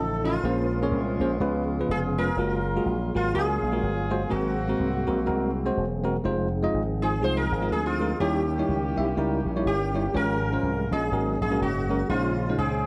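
Heard through a moderate large studio reverb, this jubilant, uplifting uptempo gospel excerpt at 124 BPM in Db major swings along as a buzzing, shimmering sitar with sympathetic strings and a mellow, distant horn section with light vibrato share the melody over bell-like tine electric piano accompaniment up front, a soft, flute-like tonewheel organ with chorus vibrato, key click and a stopped rotary speaker sustaining in the background, and a punchy slap bass driven through an envelope filter.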